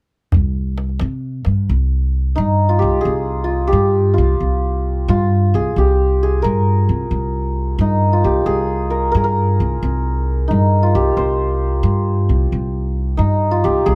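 A mellow, shimmering santur carries the melancholic, longing melody of this Persian modal piece in shur, entering at 2.4 seconds with a ringing, hammered tone that sits up front in a dry, close room. Beneath it, a woody, dark pizzicato upright bass holds the low end from the opening through to the end of the cut, while a deep, hard-handed tombak sounds only briefly at the start, stopping at 1.6 seconds. The 6/8 metre keeps a straight feel throughout this fragment of a longer piece.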